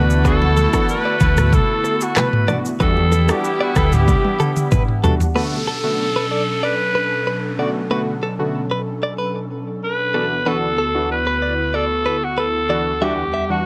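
A straight 4/4 afrobeats groove at 94 BPM opens this mellow, sultry passage in B minor, with a deep-kicked, up-front afro-pop drum kit of handclaps, rim clicks, shaker and toms carrying a gritty 12-bit sampler texture, joined at 0.4 seconds by very quiet, bright, damped congas. A round, punchy hollow-body bass grounds the opening, dropping out at 4.1 seconds as a drum fill leads to the point where the kit and congas stop at 5.3 seconds. Out front, a growling alto saxophone carries the melody with raspy vibrato and a tape echo, while a distant, roomy horn section adds a loose second line only through the first five seconds. Detuned sawtooth analog keys with a filter sweep and chorus, an airy pad with a slow attack and long release, and a clean, scooped electric guitar riff with tremolo sustain the harmony through D69, Em9 and Bm7 changes. From 5.4 seconds an electronic downlifter sits faintly beneath the sparer second section, all bathed in light reverb, and the clip ends mid-phrase as part of a longer piece.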